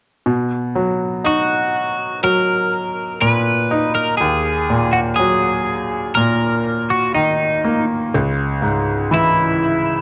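A straight, unhurried 4/4 pulse carries this tender, emotional pop excerpt, cut from a longer piece. A bright grand piano opens the accompaniment at 0.3 seconds, sitting up front with a brilliant, polished tone, short sustain and a plate reverb, moving from Bmaj7 through D#m to C#m. At 1.3 seconds a twelve-string electric guitar enters with the melody, picked and clean, its compressed, twangy sound shimmering through a phaser and plate reverb. Both parts sit close and present at an even level, carried to the end of the passage. The whole has the intimate character of a home cassette recording, set in a moderate studio room that lends a short, gentle tail.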